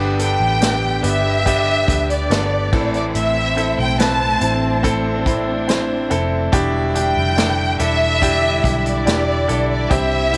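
A lush, bowed violin section carries the melody up front, singing high with expressive vibrato from 0.2 seconds in this tender, emotional pop ballad at 71 BPM in a straight 4/4. Beneath it, a clear, polished baby grand piano sits present in the mix with its accompaniment, while a smooth, even string section holds sustained chords in the background. A vintage fingered electric bass, foam-muted, round and punchy, anchors the low end with an amped tone. The acoustic drum kit, heard distant in a roomy studio, is played with bundle sticks across dark cymbals, hi-hat, a medium-tuned snare and a tight kick, also entering at 0.2 seconds. The harmony moves from G to Am to Em7 under a light reverb, and the passage is cut from a longer piece.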